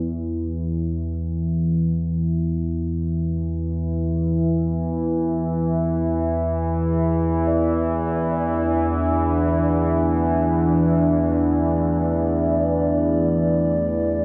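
Cavernous and ominous, this dark ambient drone fragment drifts in free time, opening on an E5 and shifting to Dsus2 over E at 7.5 seconds. An up-front analog drone built from sawtooth and pulse waves holds the low register from E2 to E3, its detuned, wave-folded tone evolving under a chorus. Barely audible gamelan-type bossed gongs, played with padded beaters, trace mellow bronze arpeggios only in the first 1.1 seconds. Throughout, a very quiet bronze singing bowl rings higher up with slow beating, its metallic tone struck with a suede striker in a boxy small room. At 8.9 seconds a deep, moody analog pad enters with chorused sustained chords, built from square and sawtooth waves with a sub octave and a moving notch. A wet spring reverb and heavy echo wrap the mix in a cavernous wash.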